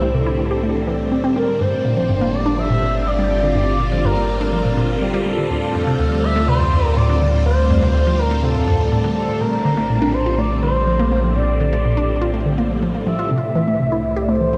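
A dreamy, reverb-soaked mix opens this cosmic, expansive stretch of ambient, sequencer-driven space music in G dorian at 123 BPM, cut from a longer piece and moving through C6, Gm7, Dm and Bbadd9 before returning to C6 at 13.3 seconds. A hollow, bouncy square-wave pluck carries the riff through chorus and delay above a round, deep analog bass, while a swirling, vintage string machine, bright and up front, holds sustained chords bathed in ensemble chorus, phaser and shimmer reverb. A smooth portamento lead sings the melody with vibrato, lush chorus and delay, and a breathy, wind-like tuned noise texture hovers very quietly high above until 13.3 seconds.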